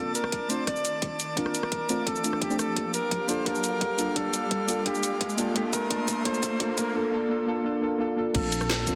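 A breathy, distant flugelhorn sings a jazz-style solo with light vibrato through a low-pass filter sweep and tape echo over deep, nasal chord stabs, an airy detuned pad and a very quiet, rumbling saw bass in this dreamy, lush liquid drum and bass build-up at 172 BPM in Bb major, while an electronic riser climbs from 0.9 to 7.0 seconds, an up-front kit with a woody snare and metallic hats drives a fill alongside a tight electronic kick, and a gritty breakbeat kit with dark cymbals slips in at 8.3 seconds, all bathed in a lush hall reverb and a dense, heavily limited master.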